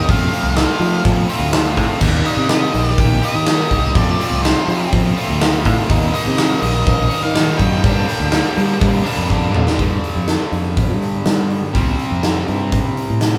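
A straight 4/4 pulse at 124 BPM drives this brooding classic rock cut in G minor, where a punchy big-room acoustic drum kit with bright cymbals sits up front beside a double-tracked, overdriven stack guitar riff and a fingered electric bass played direct, while a dark octave-fuzz lead guitar carries the melody until 9.2 seconds, just before a drum fill at 9.3 seconds moves the band from its F, Eb and Gm changes into a G5 and C5 passage, captured as a band playing live in one room with light reverb.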